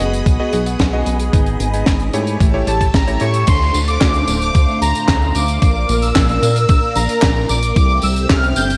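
Lush, phased string-machine chords, cutting electric grand piano stabs with digital delay and a glossy, saturated chorused synth bass open this danceable, melodramatic italo disco excerpt, joined by a tight funk kit with a high-tuned snare, handclaps, tambourine, hi-hat and crash in gated reverb over a thumpy electronic kick, before fat, detuned analog synth brass takes the melody at 2.7 seconds with chorus, tape character and delay, while the piano drops out at 3.4 seconds.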